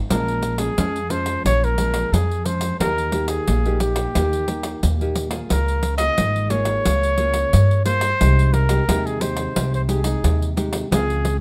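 A breathy, dark-toned trumpet leads this festive, joyful samba-choro excerpt, playing a close-miked jazz-style solo with vibrato and scooped notes that sits up front between G4 and Eb5. Beneath it, a woody, thumpy upright bass is plucked with steel strings and sits prominently in the mix, moving between Ab1 and G2. A fingerpicked nylon-string guitar adds a classical, warm accompaniment from the very start at 0.0 seconds, with the other parts joining at 0.1 seconds. A jingly pandeiro, played with hard hands and heard close and dry, drives the straight 4/4 groove at 89 BPM. In Ab major, the harmony moves from Bbm7 to Eb, Db6 and Abmaj7/C under light reverb, and the passage is cut from a longer piece, ending at 11.4 seconds.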